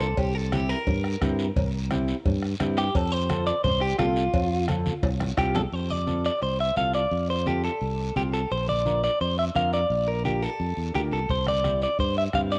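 A festive, joyful cumbia moves in straight 4/4, heard here as a short cut from a longer piece with a homespun cassette character and a small-room feel. Up front, a bright, twangy clean electric guitar carries the melody with spring reverb and tape colour, taking a solo through the opening 5.7 seconds, while a dark, mellow electric guitar with analog chorus fills in the accompaniment beneath it. A growly, up-front fingered electric bass anchors the harmony as the chords move from C7 to F, then to Bb and back to C. The percussion is rich: a raspy guiro runs throughout, low-tuned congas sit thick-skinned in the background, and a soft-beater bombo plays alongside ringing cowbell and timbales. A drum fill from 4.7 to 5.7 seconds closes the first section, after which the cowbell and timbales drop away and the bombo stays out until it returns at 11.3 seconds.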